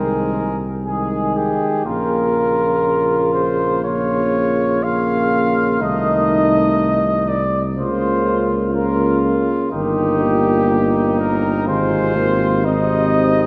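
A noble, stately passage of classical brass quintet, cut from a longer piece, opens with all five players together in a rubato 4/4: the cornet sings the melody up front with light vibrato, a distant, roomy trumpet adds a second line, the trombone's vintage-tinged accompaniment carries light vibrato, a warm, soft-attacked French horn sits in the background, and a mellow tuba anchors the bass up front, all bathed in a wet church reverb as the harmony moves from Ab/C through Bbm, Adim/C and Eb/G to rest on Ab.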